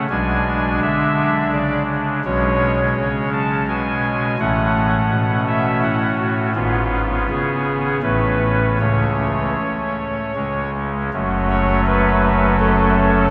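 Solemn and grave, this chorale-style classical fragment, cut from a longer piece, unfolds in a flexible, rubato three-beat metre on a solo pipe organ voiced with a soft reed oboe stop in baroque style, its tremulant giving the tone a gentle waver as it sits up front and spans from deep pedal notes to the upper register. The harmony moves through diminished and seventh-chord colour before the second section arrives at 11.1 s and settles onto an F# minor chord. A long, wet cathedral reverb surrounds the instrument, and the listener seems placed further back in the vast space.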